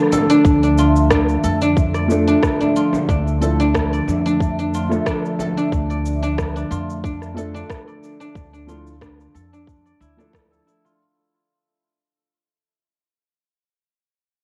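A lightly swung 91 BPM groove of tight, overdriven electronic kick and crunchy shaker with rim click drives this hypnotic, warm organic downtempo piece in D minor. It is built on a growly pizzicato upright bass that pumps against the kick and a deep frame drum sitting in the background until 5.5 s. Above them, a silvery, fingerpicked guzheng rings out arpeggios through a low-pass filter and analog delay, lingering until 13.4 s. A breathy pad holds chorused, phased, pumping chords, and from 2.1 s a boxy, felt-muted upright piano with audible action noise adds 12-bit-gritted, delayed accompaniment. The whole fading passage is soaked in cassette hiss and a moderate spring reverb, like a home tape recording.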